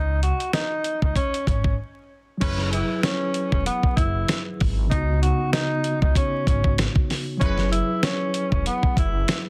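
Moody and reflective, this boom-bap hip-hop excerpt rolls at 96 BPM with a light swing, opening on a breathy, whispered tenor saxophone played in a subtone with scooped notes and tape echo over a woody pizzicato upright bass and a gritty sampler-style drum kit with a thumpy kick and fat snare. At 2.4 seconds a mellow tine electric piano enters with cassette-tape colour, moving through F#9sus4 and C#9sus4 chords, while a clear jazz horn section adds brief stabs in the background at 2.4 and 7.4 seconds. The small room ambience, vinyl crackle and dense, heavily limited master give the cut a dusty, intimate feel.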